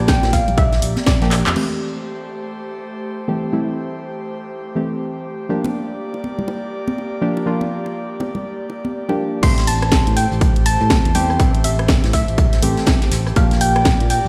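Heard through a big sound system in a bare stone room, this late-night, hypnotic deep house cut rests on an airy pad and dark, decaying chord stabs that pump throughout, with hard-handed bongos and congas filling the middle from 5.6 s, until the drop at 9.4 s brings back the punchy overdriven kick, the cracking house snare and claps, brushed vintage snare and hats in the background, a tube-saturated fingered electric bass, and a soft round pluck melody trailing dub echo.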